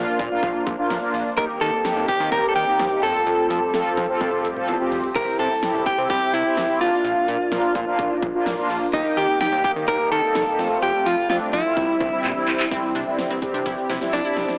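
Synth-pop in C mixolydian at 127 BPM in a straight 4/4, this short excerpt cut from a longer piece feels nostalgic and bright. A clean, direct-recorded electric guitar carries the melody up front, picked and compressed with a scooped tone, a vibrato effect and tape echo. Beneath it, mellow synth brass plays a dark, round, brassy accompaniment treated with chorus and phaser. A sweeping resonant pad holds vintage, warbling chords in the background, while a fat analog bass adds thick, tube-saturated low end. A punchy, overdriven pop kit with a fat snare and metallic hats enters at 0.2 seconds, with fills around 4.2 and 12.2 seconds, and a bright analog pluck adds arpeggios from 12.7 seconds as the second section begins. The chords move through Bb, Eb6, Fadd9 and C, and the whole mix sits in a lush hall reverb with a blown-out, AM-radio character and a faint mains hum.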